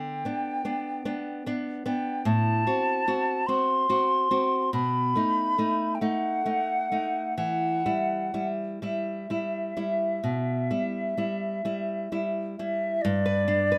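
Solemn and elegiac, this romantic duo for concert flute and nylon-string guitar moves slowly in E minor, around 41 to 51 beats per minute counted in dotted quarters, with a free, rubato 12/8 feel. The silver flute carries the melody in a mellow, hollow voice with vibrato and a crisp attack, sitting at a slight distance in the sound. Beneath it, the fingerpicked guitar supplies the accompaniment with a bright, small tone from fresh strings, placed up front and close to the listener. The harmony travels from G through F#dim/A and B7 to a settled E minor at 7.4 seconds, before turning back to G at 13.0 seconds. Both instruments play together throughout this short passage cut from a longer piece, captured by close, detailed microphones in light reverb.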